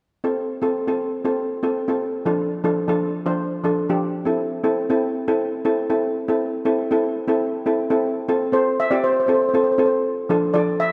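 Shimmering, metallic steel pans carry this sunny, carefree calypso, cut from a longer piece and moving at 120 BPM in a straight 4/4 in F major. A double-seconds pan, struck with medium rubber sticks, sounds airy and up front as it plays the accompaniment over F, Dm/F and Am from 0.2 seconds, and at 8.5 seconds a cello pan played with hard rubber sticks enters with the melody, its tone warm and boxy with a small-room quality, also up front. A lush, wet hall reverb hangs over the rough home-demo mix.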